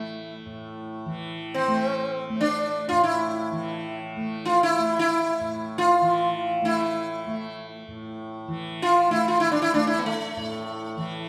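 A lush recital-hall reverb surrounds this brief passage of Hindustani classical music, cut from a longer performance and unfolding in free time with a meditative, longing mood. Up front, a bright, plectrum-plucked sitar sings the melody, its buzzing tone haloed by shimmering sympathetic strings. Beneath it, a softly plucked, warm tanpura sustains a quiet drone throughout the 11.3 seconds.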